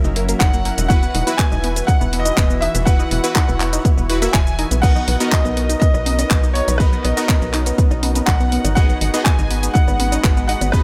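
A straight progressive house groove drives this hopeful, euphoric excerpt, anchored by a deep, overdriven electronic kick up front from 0.4 s, with a layered deep house kit of crash, handclaps, hi-hat and shaker, and tape-warm congas and bongos tucked into the background from 5.0 s. A tight, dark sequencer bass and a lush, detuned unison pluck arpeggio pump under the sidechain alongside bright supersaw stabs with delay, while an evolving, warbling wavetable pad sustains phased chords far behind. Over this a brilliant grand piano carries the melody through dub echo, joined by an intimate chamber violin section bowing a soft second line as the chords move from F#7 through Esus2 and Bmaj7 to G#m7.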